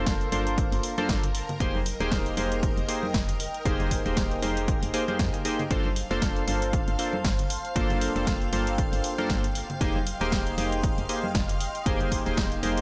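Smooth and moody, this deep house passage, cut from a longer piece, has a gentle swing and moves between Gm11 and Fm11 chords, with detuned, chorused analog keys playing bright, round stabs up front through a low-pass filter sweep and delay while a woody, soft FM bass adds tube saturation beneath. A deep, mellow analog pad with vintage 12-bit sampler grit holds sustained chords in the background as shimmering string-machine violins add a sustained texture behind it, and the pad, keys and bass all pump against the sidechain. A punchy, tape-kissed electronic kick and analog drum machine hi-hat and snare drive the groove from 0.1 seconds, joined by overdriven, layered congas set back in the mix, all inside a light digital ambience.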